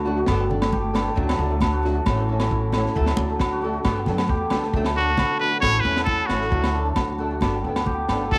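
Highlife guitar band music with a joyful, danceable, straight feel, heard here as a short cut from a longer piece. A shimmering, ringing hammered dulcimer plays arpeggios up front over a woody, thumpy pizzicato upright bass with gut strings, while a fingerpicked steel-string acoustic guitar adds warm accompaniment beneath. The rhythm section pairs a crunchy breakbeat kit, saturated and gritty with a punchy kick, high-tuned snare and rolled-off top, with close, dry agogo bells and damped, thick-skinned congas sitting in the background. The harmony cycles through Gadd9, D and A, and at 5.0 s a brilliant, nasal trumpet with a straight mute enters as the soloist, playing a jazz-style melody with a soft attack. A moderate plate reverb and small room ambience give the whole band a compact, lively space.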